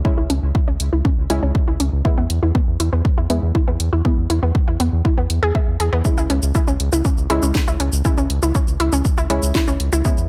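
A dry mix opens this dark, dramatic fragment of melodic techno in a straight four-four, led by a punchy, overdriven electronic kick sitting up front beside a deep, evolving bass of sawtooth and sine tones with ring modulation, pumping against the kick. Bright, detuned analog pluck arpeggios with a noise layer and chorus run under a filter sweep, while muted dub chord stabs add short, chorused hits, both parts pumping and trailing dub echo. From 0.3 seconds a house drum kit joins with a cracking snare, bright hi-hats and shaker, overdriven and tucked lower in the mix.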